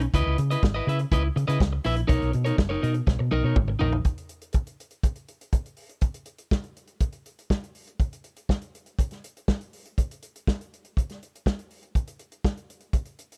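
Disco at 122 BPM in B major, danceable and celebratory, where a slightly broken-up picked electric guitar and a dark, round hollow-body bass play over C#m9 and Bmaj9 chords until 4.0 seconds, leaving a roomy soul drum kit with a tight kick and rolled-off top to carry on alone after a fill at 3.1 seconds, all in a small room reverb in this fragment cut from a longer piece.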